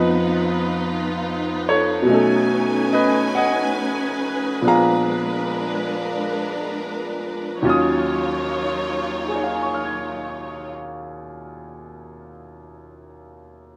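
A clear, open concert grand piano sits up front with deep bass, accompanying this smoky, wistful jazz ballad in a slow swung 4/4 that slows through its first 7.6 seconds. A lush, bowed symphonic string section with soft attack and expressive vibrato holds sustained chords alongside it until 10.7 seconds, leaving the piano alone to close the fragment at 13.8 seconds over a final minor-ninth chord. A wet studio reverb surrounds the close sound.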